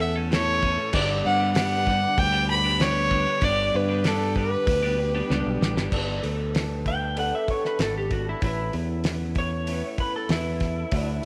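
Recorded with light reverb and a small-room ambience, this nostalgic folk and heartland rock excerpt opens with a woody, up-front bowed fiddle melody over a shimmering, octave-doubled twelve-string acoustic guitar, a bright, twangy twelve-string electric riff in the background, very quiet tonewheel organ chords through a slow rotary speaker, a round fingered bass and a cloth-damped, thuddy kit with a fat snare and dark cymbals, and after a drum fill at 5.3 seconds a slightly broken-up electric slide guitar enters at 6.9 seconds for a solo.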